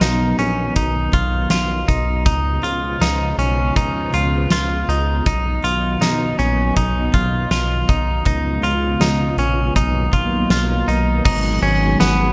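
A floating, dreamy dream pop passage in B lydian at 80 BPM opens with a dark, vintage string machine of cellos holding slow-attack chords under bright, twangy arpeggios from a clean, direct-recorded electric guitar carrying subtle chorus and tape echo. A glossy, retro chorused synth bass with a plucky filter sits beneath a huge arena drum kit of punchy kick, fat snare, hi-hat, ride, crash and tambourine, all in a light reverb with small-room ambience. The harmony moves between B and C#7, touches Bmaj7 at 9.8 seconds and settles on G#m7 at 11.3 seconds before this cut from a longer piece ends.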